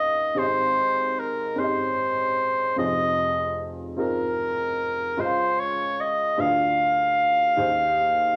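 A clear, smooth-topped oboe sits up front with a solo melody in classical style, moving between Bb4 and F5 over a worn, woody, slightly detuned upright piano that ranges from deep bass to high treble. This hopeful, soulful gospel passage in Ab major rolls along at 50 BPM in a straight 6/8, moving through Abmaj7, Fm7, Dbmaj7 and Ddim7 before settling on Ab/Eb. Both instruments carry cassette tape coloring and plate reverb, heard in a small room on a home recording, and the 8.4-second clip is cut from a longer piece.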